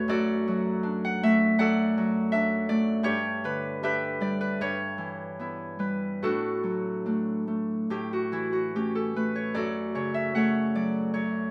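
Set in light reverb, this peaceful, serene 11.5-second excerpt of a classical solo piece features an up-front acoustic Celtic harp, bright and ringing under fingerpicked strings, moving with rubato at around 71-83 BPM in 4/4 through chords in D major from D/F# to G, Em/G, D/A, A and F#m across a range from F#2 to F#5.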